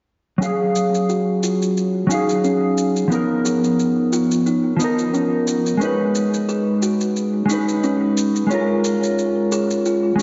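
A lush, wet hall reverb surrounds this sunset chillout fragment, giving it a big arena sound with a soft, rounded top end. It feels wistful and smooth, moving with a gentle swing in 4/4. An up-front, mellow electric guitar carries the accompaniment, its clean, fingered tone dark and compressed, with a low-pass filter, delay and a filter sweep shaping it. A woody kalimba spins arpeggios alongside it with a hollow, ringing thumb pluck, also filtered, swept and trailed by delay. A layered electronic shaker sits low in the mix, overdriven and dressed in studio reverb, and all three parts play together from 0.4 to 10.2 seconds as the harmony drifts through rootless Ebm11 and Db13 chords into B69 and Bbm7.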